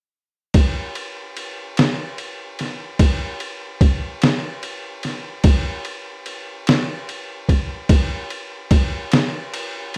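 A rough home demo mix with light reverb gives this short blues cut, taken from a longer piece, a cramped, unpolished character. The only part is a trip hop sampler-style drum kit, sitting up front and re-recorded in a small room. It enters at 0.5 seconds and plays through to 10.0 seconds, using kick drum, snare drum and ride cymbal. The kit sounds compressed and pitched down, with a muffled, thumpy kick, a medium-tuned snare and an overdriven grit across the whole kit. Set in a slow 12/8 with a straight feel, the groove carries a brooding, mournful mood.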